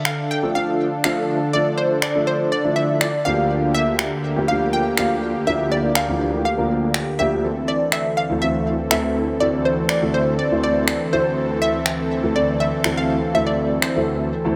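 Dance-pop in a straight 4/4, this cut from a longer piece sets a confident yet bittersweet mood inside a dreamy mix soaked in moderate plate reverb and digital ambience. A bright, round analog pluck carries the melody between C5 and G5, its detuned sawtooth and square-wave tone layered with noise and dressed in chorus and delay. Beneath it, a soft supersaw holds smooth, full-bodied detuned chords from the opening. A warm concert grand piano with deep bass and an ensemble chorus joins as accompaniment at 0.4 seconds. Produced electronic finger snaps, re-recorded in a small room, sit up front from 0.1 seconds to 13.9 seconds, while the harmony moves from Dm through Gm7/D to Am/D.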